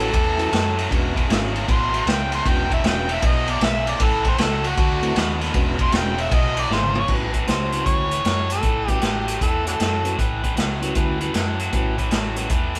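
Soulful and swaggering, this electric blues shuffle swings at 155 BPM in A mixolydian, with a gritty, amplified harmonica taking a jazz-style solo full of tongue slaps, scooped notes and light vibrato until 7.1 seconds, when a drum fill ushers in the next section. Underneath, a bright, picked overdriven electric guitar riffs low, a round, foam-muted vintage bass holds the bottom, and an up-front vintage kit with dark cymbals and a punchy kick drives the groove. A soft, flute-like tonewheel organ with key click and slow rotary speaker sits in the background, all captured live in a stone room in a passage cut from a longer piece.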